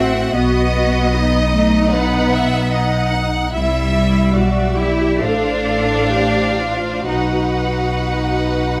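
In a rubato 4/4 pulse that moves between 61 and 78 BPM, this excerpt from a slow, romantic classical movement for string orchestra unfolds with a yearning, solemn mood, its harmony passing from B to C, then F/A, and back to B at 7.1 seconds. A rich first violin section carries the vibrato-laden melody up high while a clear second violin section traces a line just beneath it. Dark, expressive violas fill in the accompaniment, smooth cellos and up-front double basses anchor the bass, and the whole ensemble sits in a moderate recital hall reverb captured by close, detailed microphones.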